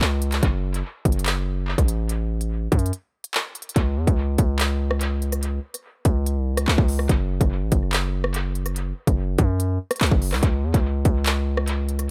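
Tense and dark, this half-time drill hip hop fragment at 144 BPM pairs a produced electronic drum kit of hard-clipped kick, crisp hi-hats, handclaps and rim clicks, treated with tape echo and placed up front, with a heavy, aggressive 808-style bass whose saturated sine tone, noise layer, fast attack and decaying tail sit equally close, set in an echo-heavy digital ambience, with a brief break at 2.9 seconds before a new section takes over at 3.8 seconds.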